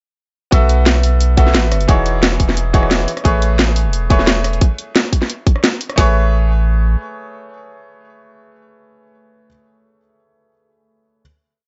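Two layered electronic drum kits, placed up front in a small room, drive this short, lush liquid drum and bass piece at 176 BPM in A lydian: one plays a two-step pattern with a tight kick, woody snare and open hats, and the other rolls along with rim clicks, a cracking snare and closed and half-open hats, while a deep, round sine sub bass carries long gliding notes and a brilliant, polished grand piano with digital delay plays spread, held chords with syncopated pushes from B7sus4 through Emaj13 and Amaj9, until the drums stop at 6.0 seconds and the piano holds a final Amaj9 chord until 11.2 seconds.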